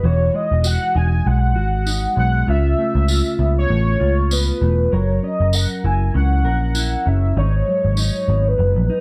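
Indie pop with a bedroom-pop haze, this laid-back, dreamy 9-second excerpt moves at 98 BPM in E lydian with a light swing, as a velvety, detuned sawtooth synth lead sings the melody up front with subtle chorus and slapback echo over a dark, clean, fingered electric guitar bathed in lush chorus and vibrato, a round, punchy foam-muted vintage bass, and a jingly, distant tambourine entering at 0.6 seconds, all passing through Emaj9, C#7alt, F#7 and G#m7 in light reverb.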